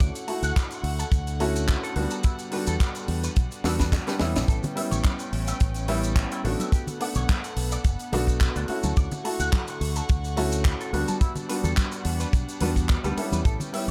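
Groovy and sunny, this nu-disco fragment, cut from a longer piece, rides a lightly swung sixteenth-note feel in 4/4, moving through lush chords such as Dmaj7, Em9 and A9. A dry, tight acoustic kick sits up front, while a polished funk kit with a high-tuned snare, handclaps, hi-hat and shaker adds an airy small-room sparkle and drops a fill at 3.6 seconds. Soft-handed, damped congas join in the background at 4.6 seconds. A fingered electric bass, direct and amped through an envelope filter, carries the low end, and a clean, picked, compressed guitar with its own envelope filter plays a riff further back, touched by subtle chorus and analog delay. An intimate concert grand with audible action noise and deep bass supplies warm accompaniment through sidechain pumping and analog delay, while a distant, floating string section holds pure, sul tasto chords that pump with sidechain compression.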